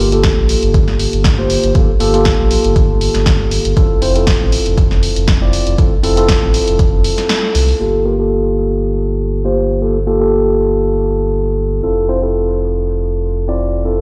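Smooth and warm, this deep house excerpt is built on mellow, clean tine electric piano stabs placed up front with a low-pass filter, dub echo and sidechain pumping, over a deep, full sine-and-triangle sub bass with an added octave that also pumps. A punchy analog drum machine supplies hi-hat and snare alongside an electronic kick, both re-recorded in a small room. The kick fades out before the band accent at 7.3 seconds, and the drum machine stops at 7.8 seconds. The whole cut sounds as if played on a big sound system in a bare stone room, giving it a light, reflective reverb.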